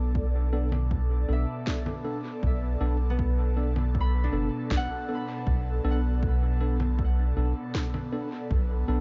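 A round, up-front dub sub bass anchors this deep, hazy ambient dub cut at 79 BPM in B minor, resting on a single Bm7 while a breathy, detuned pad drifts through chorus and phaser, a ringing concert harp plays arpeggios through tape echo, a bright tine electric piano adds clean stabs soaked in dub echo, and a punchy kick sits in the background beside electronic congas and a woody snare in studio reverb, all within a dark mix that rolls off above 7.6 kHz.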